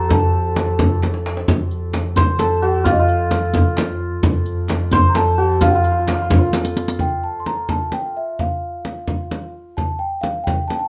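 Festive yet stately, this short cut from a longer Persian modal ensemble piece moves at 87 BPM in a straight 6/8, settling into F dastgah mahur from 7.0 seconds. A large celesta carries the melody between Eb5 and C6, its bell-like, sweet tone struck with soft felt hammers and bathed in plate reverb, while a shimmering, hammered santur plays a second line beneath it until 9.7 seconds. A bowed double bass holds an earthy F2 drone with light vibrato through the first 7.0 seconds. Percussion comes from an up-front frame drum, compressed and saturated under hard hands, a tight, vintage-sounding tombak in the background, and a riq whose bright jingles sound close and dry, entering at 1.5 seconds; drum fills mark 1.0 to 1.5 seconds and the turn into the second section at 6.5 to 7.0 seconds. The ensemble sits in a moderate studio room captured with close, detailed microphones.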